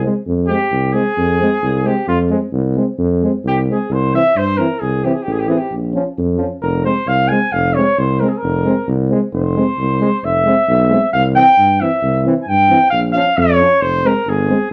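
Fiery yet bittersweet, this excerpt of Balkan brass band folk drives along at 133 BPM in a straight 2/4, set in F harmonic minor with tuning slightly above standard pitch. The clear flugelhorn carries the melody up front, playing a jazz-style solo from 0.3 seconds with scooped notes and light vibrato. Beneath it, a roomy, distant-sounding tuba anchors the bass in a classical style. A euphonium with a soft attack and a warm, present trombone fill out the accompaniment in the middle register. The harmony moves between F minor, C and B-flat minor, and a wet studio reverb places the band further back in the room.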